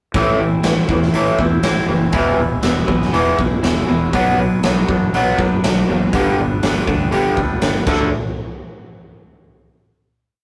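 Cathartic and bittersweet, this short quiet-loud alternative rock piece opens as a pre-chorus, with a bright, palm-muted overdriven electric guitar riff up front over a big, punchy acoustic drum kit driving a rock groove of kick, snare, hi-hat and crash. A twangy, scooped clean guitar plays arpeggios through a phaser while a growly fuzz bass pushes eighth notes from the background, the chords moving from Am through E, Bm and G to Dadd9. Everything breaks off at 8.1 seconds for a final hit, heard in a rough rehearsal-room recording with tube saturation and a small room reverb.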